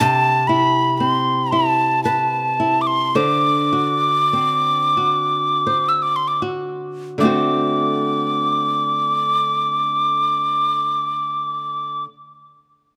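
Tender and pastoral, this fragment of a Celtic slow air in a rubato 3/4 sets a breathy, mellow wooden whistle melody, with its chiff, crisp attack, vibrato and woody tone, unsteady and up front over fingerpicked flamenco guitar on fresh strings, drifting from Cmaj7 to D7 at 3.2 seconds and slowing through the first 7.2 seconds, all captured by close, detailed microphones with light reverb.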